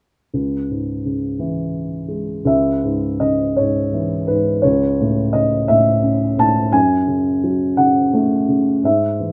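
A dark, boxy baby grand piano enters at 0.3 s, playing alone and up front in a wistful classical solo set in a flexible, rubato 6/8. The opening phrase gives way to a new passage at 2.5 s, and the harmony shifts at 4.6 s and again at 6.7 s. The piano's mellow tone has a short sustain and spans a low bass to the upper treble, sitting in light reverb in this fragment of a longer piece.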